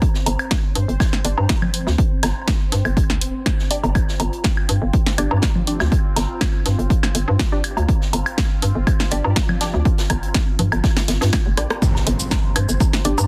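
Hypnotic and sparse, this minimal techno excerpt at 122 BPM pairs a dry, up-front electronic kick and a hollow, bouncy FM bass with tube saturation and sidechain pumping against a punchy, tape-warm analog drum machine, delayed woodblock and congas re-recorded in a large room, a muted, detuned dub chord stab with phaser, chorus and delay entering at 1.2 seconds, a bubbling, resonant stepped-filter texture and a natural acoustic jazz kit in the background, before a drum fill at 11.6 seconds leads into a drop where a background impact sounds at 11.8 seconds, all in a dense, heavily limited mix with little reverb.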